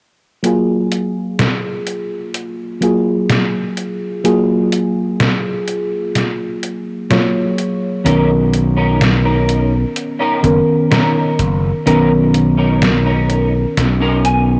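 A slow, straight 4/4 pulse at 63 BPM comes from a detuned 8-bit drum machine, its hi-hat and medium-tuned snare sitting up front in gated reverb, beneath a round, dark FM electric piano that holds F#maj9 with subtle chorus and analog delay in this faded, woozy vaporwave excerpt in F# major. A clean, picked electric guitar riff with ensemble chorus and 12-bit sampler grit enters at 8.0 seconds, and at 8.1 seconds the harmony shifts to Bmaj9 as a growly, overdriven slap bass arrives punchy and forward; the guitar adds a brief fill from 13.8 seconds. Light reverb and a cassette-tape cast give the recording a hazy, worn sheen.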